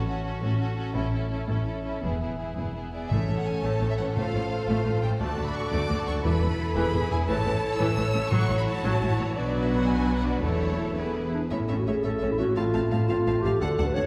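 A wet scoring-stage reverb places this cinematic orchestral passage further back in the room, giving it a spacious, triumphant and adventurous character in A major at 114 BPM, counted in dotted quarters in a straight 6/8. The piece is cut from a longer work. Bowed string sections carry it from the first second: a chamber violin section sings the expressive vibrato melody while a second violin section holds a smooth, even line beneath. A lush, intense viola section fills the middle, and a clear cello section and a rich double bass section anchor the low end. After a brief build-up, a ringing, fingerpicked concert harp joins with arpeggios at 3.1 seconds, while timpani played with medium mallets sit in the background until about 10.9 seconds. Near the close, a dark solo clarinet comes up front with a second line at 11.3 seconds, and a French horn section adds warm sustained chords behind it as the harmony settles back on A.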